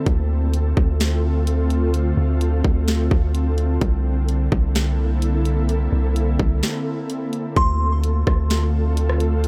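In a dry, close mix, this spacious, hazy cloud-rap excerpt rides a half-time feel as an ethereal pad with detuned sawtooth unison, ensemble chorus and its own reverb pumps under a deep, mellow sine 808 bass and a trap kit with hard-clipped kick, sharp snare, rim click and bright hats, and after a break from 6.6 s a delicate, tinkling FM bell with phaser and tape echo chimes in at 7.6 s.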